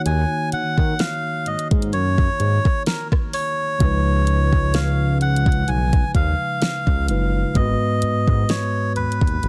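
A reedy, breathy melodica carries the melody up front, its close-miked, nasal tone sitting high between Bb4 and Ab5 and trailed by a digital delay. This is a late-night, sensual slice of contemporary R&B in Eb minor, moving at a slow 64 BPM in 4/4 with a light swing on the 16ths. Beneath it, a smooth synth bass built from detuned sawtooth and square waves glides between notes with portamento, reaching down to Gb1, while a mellow tine electric piano supplies clean, direct chords. An electronic drum kit with a soft kick, fat snare, rim click and hi-hat sits prominently in the mix. The harmony moves from Ebm7 to Db7 at 3.8 seconds and Abm7 at 7.6 seconds, all in a dry, dense and heavily limited modern master across this short cut from a longer piece.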